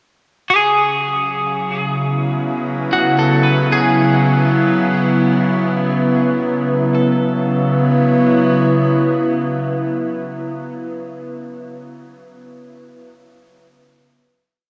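Floating in free time, this serene, peaceful ambient piece opens at 0.5 seconds with a clean, twangy twelve-string electric guitar picking scattered arpeggio notes through spring reverb and a diffuse delay, fading out across its opening stretch. An up-front, morphing wavetable pad, detuned and bright with chorus and a slow attack, sustains slowly shifting chords from C#m to a closing A at 6.9 seconds. The whole recording is steeped in a huge, cavernous reverb and the warbling pitch drift of worn cassette tape.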